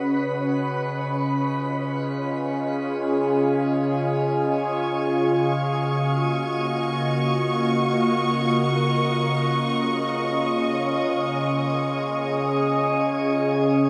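A detuned, warbling wavetable pad opens this weightless ambient excerpt up front, its slow-attack sustained chords morphing through a phaser from Dbadd9 to Ebm7/Db and back, while at 4.6 s a dark, intimate violin section enters softly behind it, bowed sul tasto on a high Db with gentle vibrato, the whole scene suspended in a warm, washy shimmer reverb.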